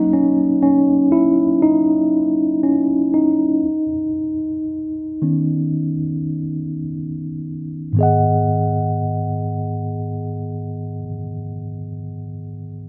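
In a straight, slow 4/4 at 53-60 BPM that slows down over the first 8.0 seconds, this emotional, longing pop fragment in G# minor (tuned to A4 = 442 Hz) features a mellow, clean tine electric piano, heard solo for the first 8.0 seconds and up front through its built-in speakers, ranging from G#2 to F#5 and moving from F# to Badd9 before settling on G#m7 at 8.0 seconds, all bathed in a lush hall reverb over a faint mains hum.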